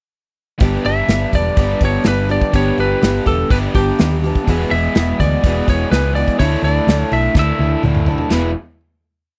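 This short, complete piece moves in a straight 4/4 with a big rock groove, the natural country drum kit up front with a punchy kick, a medium-tuned snare, hi-hat, crash cymbal and toms, and a fill from 7.4 to 8.3 seconds. Underneath, a round, dark hollow-body short-scale electric bass, fingered and amped, drives steady eighth notes. It blends folk rock and heartland rock in a hopeful, warm mood, with a picked twelve-string acoustic guitar strumming open chord shapes in eighths, its octave-doubled tone shimmering and boxy, with audible finger squeak. A double-tracked, overdriven garage guitar rings out chords as a riff over the G, E and Dsus2 changes. From 0.9 to 7.8 seconds a bright, twangy, slightly broken-up lead guitar plays compressed hook phrases up front, before everything settles on a final E chord at 8.3 seconds in a dry, close 1970s-style studio sound.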